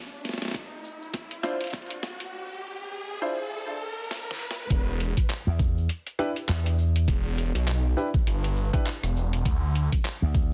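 Funky and swaggering, this glitch hop excerpt at 101 BPM in E phrygian opens with an electronic riser, a gritty pitched-down boom bap kit with handclaps, hi-hat, rim click and high-tuned snare, a grainy tube shaker, an overdriven knocking electronic kick and dark, mellow grand piano stabs with sidechain pumping and digital delay over Dm9, then drops at 4.7 seconds into Em as a swirling, thick phased detuned saw bass arrives, followed shortly after by a bright, punchy slap bass with an envelope filter, all in a dense, heavily limited mix with light digital ambience.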